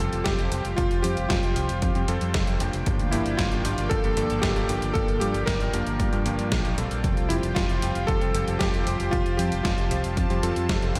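Soaked in a dreamy, lush hall reverb, this romantic, playful italo disco excerpt in F major moves at 115 BPM over a sustained Fsus2, with a bright, cutting electric grand piano carrying the melody, a thick detuned unison pad holding chords, a second, clangy electric grand piano playing stabs, a punchy fingered electric bass with tube saturation, a tape-toned 80s drum machine playing hi-hat and a gated-reverb snare, and a dry analog kick drum that enters at 0.3 seconds.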